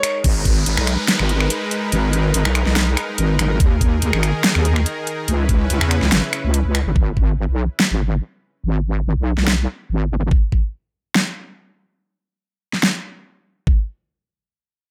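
Built on a half-time feel at 143 BPM in 4/4, with a slight swing on the sixteenths, this heavy, chaotic wobble dubstep cut in G# minor opens on a break and a band accent. An overdriven electronic drum kit sits up front with a huge snare, hi-hat and finger snaps, joined at intervals by a knocking, layered electronic kick. The wobble bass also stands up front, a resonant, saturated blend of square and sine tones with a fast attack, thickened by chorus and overdrive, and it runs until 10.3 seconds. Beneath it, a lush supersaw pad of detuned sawtooth unison voices holds soft-attack chords with sidechain pumping and a low-pass filter until 6.9 seconds, while a downlifter effect hovers in the background. The harmony moves through G#madd9, D#sus4, C#m7 and G#m before the drums carry on alone in a dry mix with little reverb.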